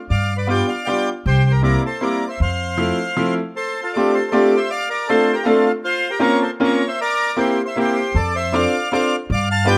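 A whirling, nostalgic musette waltz in a loose, rubato three, cut from a longer piece, with a reedy, airy accordion singing the melody up front over a brilliant, woody upright piano bathed in plate reverb, while a dark, thumpy pizzicato upright bass drops out at 2.9 seconds and returns at 8.1 seconds, all in a rough home demo mix with light reverb.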